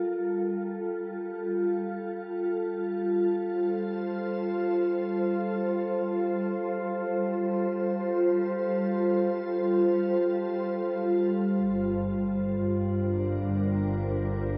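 Floating in free time, this ambient piece is serene and melancholic, drifting rather than pulsing. A glassy, ethereal FM pad carries it throughout, holding sustained chords from G3 to C5 with slow attacks, long releases and a shimmering ensemble chorus layered over its own built-in reverb. It rests on an F/G chord until 11.6 seconds, when the harmony shifts to Gm7 and a bowed chamber double bass section enters on a low G1, earthy and biting with a light vibrato, sitting quieter than the pad. A vast cathedral reverb bathes the sound in a long, wet tail, while a cassette-tape character dulls the top end and lends the recording a hazy, aged quality. The passage is cut from a longer piece and ends just as the bass has settled in beneath the pad.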